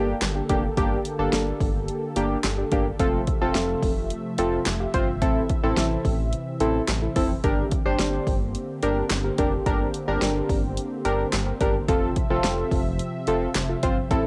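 Synth-pop in G dorian at 108 BPM, this short cut from a longer piece carries a melancholic, cool mood over a straight 4/4 feel. Up-front analog keys, detuned and chorused with a filter sweep, play the accompaniment with a fast attack that decays, while a smooth, dark pad holds sustained chords beneath them with a soft attack and long release. A round analog bass sits low and deep, its evolving tone blending sawtooth, sine and triangle waves into a sustained, dark foundation. An electronic deep house kit enters at 0.2 seconds, layered and up front, with handclaps, hi-hat, a fat snare and a punchy kick. The harmony moves from Gmadd9 through Fmaj7 and Am to Gm before returning to Fmaj7, and a home cassette recording with light reverb gives the keys, pad and drums a tape-worn character.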